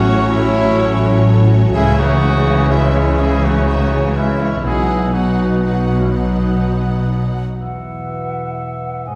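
A focused, up-front double bass section anchors this adventurous, swashbuckling cinematic excerpt in 3/4, beneath a smooth cello section in the background, a lush viola section, symphonic violins carrying the melody over expressive studio violins, clarinet and cor anglais on second lines, sustained chords from a clear trombone section and a mellow French horn section, distant, roomy trumpet stabs and bright, ringing harp arpeggios, set in a wet scoring-stage reverb heard from further back, until the strings, trumpet and trombones fall away and a hollow, pure silver flute enters at 7.6 s.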